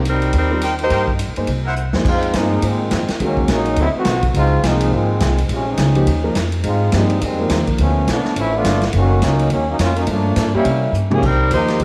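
Big band swing in F minor at 209 BPM, sultry and dramatic, opens with a mellow saxophone section carrying the melody over woody, growly pizzicato upright bass, a roomy, distant drum kit and an intimate grand piano with audible action noise in the background, as clear trumpet stabs with slapback echo flash briefly before a bright, up-front trombone section takes a solo from 2.1 seconds through a drum fill at 10.9 seconds, all set in an echo-chamber reverb with small room ambience.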